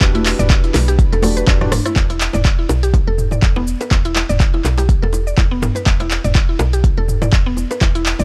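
A dry, gritty cassette-tape sound in a small room carries this driving, spiritual afro house excerpt at 123 BPM in E minor, swung on the sixteenths, opening on a drop where a faint, floating string section holds an Em7 chord and a bell-like tine electric piano stabs with analog delay, both falling away by 1.9 seconds during a drum fill. Underneath, a deep, up-front electronic kick and a smooth-hatted deep house kit with handclaps, rim click, shaker and toms drive alongside tight, high-tuned bongos and background congas that play only until 1.9 seconds. A woody, dark FM bass and a mallet-like synth pluck arpeggio with chorus, both pumping to the sidechain, carry on over an E5 chord from 2.0 seconds.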